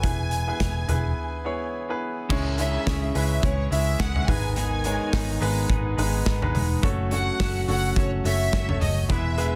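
Bittersweet and earnest, this short excerpt of piano-driven pop moves at 106 BPM in 4/4 with a light 16th-note swing, set in C# minor. A dark, woody violin section carries the melody with vibrato and a soft bowed attack, while a clear, polished baby grand piano supplies the accompaniment and a vintage muted electric bass, round and amped, anchors the low end. A loose indie drum kit sits up front with dark cymbals, a tight kick and a pumping small-room sound, and there is a break from 1.2 to 2.3 seconds. At 2.3 seconds a mellow, distant French horn section enters in the background with a second line, alongside a compressed twelve-string electric guitar playing a clean picked riff. The harmony moves from E to C#m, G#m and F#m under light reverb, and the whole is finished with a dense, heavily limited modern master.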